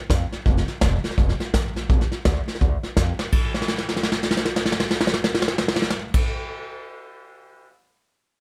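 Rockabilly at 167 BPM in Bb major with a rowdy, upbeat swing, this excerpt pairs a woody, growly pizzicato upright bass on steel strings with an up-front vintage brush kit, its punchy kick, medium-tuned snare, hi-hat and dark crash cymbal pumping in a small, dry room, with a drum fill at 3.2 seconds, another running from 3.5 to 6.1 seconds, and the drums carrying on alone after the bass stops at 6.2 seconds.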